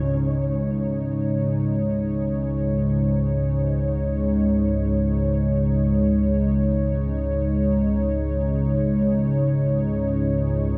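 A low analog drone and a sweeping, resonant pad begin together at 0.0 seconds, opening this short fragment of dark ambient drone music in free time, tuned to A4 = 439 Hz. The drone sits up front in the low register, blending sawtooth, pulse and triangle waves with pulse-width modulation and ring modulation into a mellow, slowly evolving tone with a slow attack, long release and chorus. Above it, the pad holds sustained chords across a higher span, its detuned sawtooth and sine layers reinforced by a sub octave and shaped by a filter swell that gives it a full-bodied, resonant character, also treated with chorus. Both parts sound continuously through to 10.8 seconds. A moderate spring reverb and an echo-heavy mix surround them, creating a dark, cavernous atmosphere.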